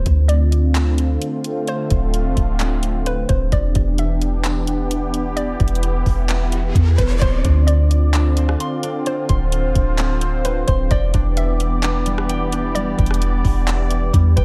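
Atmospheric cloud-rap with a half-time hip hop feel, this ethereal, hazy excerpt is cut from a longer piece. A round, dark 808-style bass sits up front with deep sine tones, alongside a produced electronic R&B drum kit of soft kick, tape-warm hi-hat, handclaps and rim click. Above them, a sweeping resonant pad built from detuned sawtooth voices holds sustained chords with a slow attack, warbling through lush chorus and sidechain pumping. A hollow, bouncy square-wave pluck with a sub octave and noise layer carries the melody, its mellow tone blurred by chorus and tape echo. A brief electronic riser at 6.1 seconds leads into the second half at 7.2 seconds, where a fingerpicked concert harp enters in the background with ringing arpeggios through tape echo. Light reverb surrounds the mix as the chords alternate between Dm7 and Em7.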